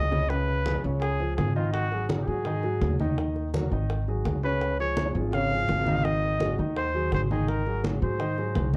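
Afro-Cuban jazz at 167 BPM in Ab mixolydian, sophisticated and danceable, cut from a longer piece: an up-front, breathy solo trumpet with light vibrato, scooped notes and a slapback echo carries the melody over a warm concert grand with deep bass and long sustain, a woody, thumpy pizzicato upright bass on gut strings, thick-skinned low-tuned congas set distant in a large room, and tight, high-tuned bongos struck with hard hands in the background, all framed by a moderate club reverb and a dark production.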